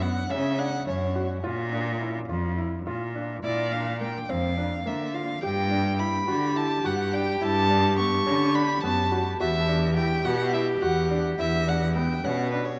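A bowed solo violin carries the melody up front, its tone warm, smooth and even with vibrato, in this restless, hypnotic piece of contemporary chamber music, cut from a longer work. It moves in an uneven 7/8 metre at 211 BPM counted in eighths, with a straight feel. Beneath it, a clear, focused solo cello holds the bass line with its own vibrato, while a felt-muted upright piano spins soft, mellow arpeggios that sound intimate and warm. At 5.4 seconds a warm clarinet enters in a classical style, adding a second line on a single pitch. The harmony drifts through F#5, A#, Gsus2 and Emadd9, and the whole ensemble sits in a vast, echoing cathedral space whose long reverb and softened top end lend the playing a hazy glow.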